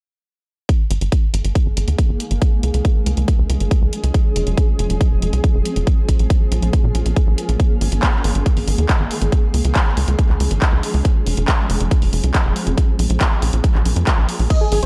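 A straight 4/4 pulse at 139 BPM drives this uplifting, soaring trance passage in Ab major, cut from a longer piece, with a punchy, layered electronic kick up front from 0.7 s and an analog drum machine re-recorded in a large room adding crash cymbal, handclaps and hi-hat. A tight, nasal sequencer bass with a fast pluck pumps against the kick, a filter sweep runs on the analog synth bass, and a shimmering, ethereal pad with an octave-up shimmer, chorus and its own reverb sustains the Absus2, Db, Fm and Bbm7 cycle. At 14.5 s huge, lush supersaw chords break in up front, tape-coloured and low-pass filtered, all within a dark production in light digital ambience.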